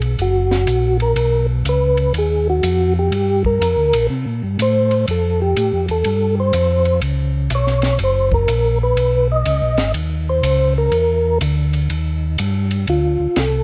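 Soulful and bluesy, this short cut from a longer soul jazz organ trio piece swings at 123 BPM in 4/4. A smooth, clean tonewheel organ carries the bass line from F#1 to C3, its chorus vibrato and slow rotary speaker keeping it up front, and it takes a solo from the opening through 12.9 seconds. A compact cocktail drum kit sits lower in the mix, dry and acoustic, with dark ride and hi-hat cymbals, a high-tuned snare and a punchy kick. Entering at 0.2 seconds, a second, percussive tonewheel organ takes the melody between F4 and D#5, its soft, flute-like voice marked by second harmonic percussion, chorus vibrato, slow rotary and a touch of plate reverb. The harmony moves restlessly through chords such as F#, Badd9, Gm7, Fmaj9, B69 and Eb before landing on Dm7, all within a lightly reverberant room.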